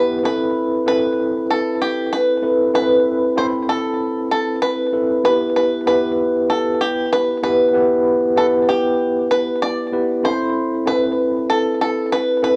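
A bright, twangy bluegrass banjo played with fingerpicks carries the melody up front, its percussive, cassette-tinged tone cutting through this moody, urgent pop fragment with a light swing. A clean tine electric piano with medium tremolo, heard through a combo amp, plays the accompaniment up front alongside it, moving from Amadd9 to Em and back to Amadd9 at 10.2 seconds. The home cassette recording sits in a wet studio reverb.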